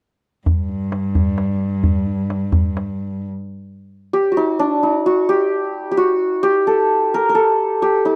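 A bowed cello drone and a tombak open this soulful, melancholic Persian modal ensemble piece together at 0.5 seconds, in a straight 6/8. The single cello holds a low, nasal, boxy tone with a smooth, even vibrato, while the tombak sounds tight and close under soft hands, both placed up front. The cello stops at 3.3 seconds, and after a brief gap the santur takes over alone at 4.1 seconds, its hammered strings shimmering and ringing through a melody in the middle register. This cut from a longer piece has the dry, intimate feel of a close 1970s-style studio recording, touched with only light reverb.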